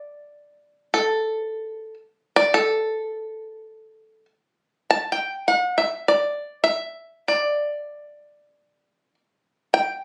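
A solo bluegrass banjo carries the recording, setting a stately tone for this makam ensemble piece cut from a longer performance. The acoustic banjo is played with fingerpicks, giving it a twangy, percussive bite, and it sits up front in the sound, moving between A4 and A5. Its phrase is heard once and then returns as a repeat from 4.5 seconds, carrying the same material through to the close at 10.0 seconds. The recording sounds as if captured on a phone in the studio, with audible room ambience, moderate reverb and compression that lend the instrument a warm, close presence.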